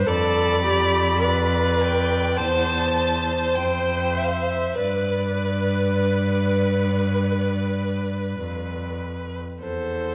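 Unhurried and rubato at 49-53 BPM in 4/4, this serene excerpt of a slow romantic string quartet movement drifts through G9/F, C/E and G before settling back on C/E. A distant, clear solo violin with focused vibrato carries the melody from 0.1 to 9.0 seconds, above smooth, even bowed lines from the rich second violin and viola, while the up-front cello anchors the bass. A dark, warm production and a wet scoring-stage reverb with a 1.9-second decay bathe the quartet in a soft glow.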